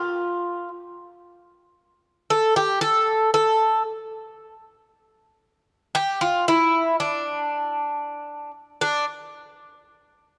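A solo Greek bouzouki opens this brooding, cool fragment of Greek folk music in free time, its picked double strings ringing metallic with some octave-doubled courses, sitting up front in a small room with light reverb and the soft patina of a home cassette recording, playing until 9.0 seconds of a piece cut from something longer.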